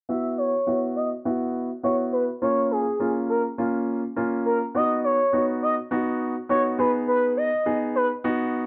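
A smooth, gliding synth lead with a sawtooth-and-triangle tone and gentle vibrato enters together with a clear, polished baby grand piano at the start of this energetic, confident pop clip at 103 BPM, singing a melody over piano chords of Esus2, A#m, B and G#m. The lead carries chorus, slapback echo and a low-pass filter, while the piano has its own low-pass filter, and a filter sweep runs through the whole passage. The lead stops at 8.1 seconds, the piano rings on until 8.7 seconds, and the dry, close 1970s-style studio sound holds only a light touch of small-room reverb.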